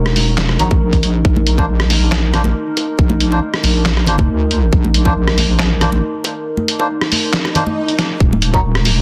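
Heavy and dark, this deep dubstep fragment moves at a half-time 138 BPM, built on a saturated, up-front wobble bass with chorus, a moody, detuned analog pad colored by chorus and phaser, a muffled, pitched-down sampler-style kit of snare, hi-hat, handclaps and rim click, bright hard-hand congas and bongos with dub echo in the background, and reedy, breathy melodica stabs that also carry dub echo, while a tight, layered electronic kick drops out at 5.1 seconds, an electronic swell arrives at 7.5 seconds, and after a drum fill at 8.0 seconds the kick returns at 8.2 seconds, all under a dense, heavily limited master with light reverb.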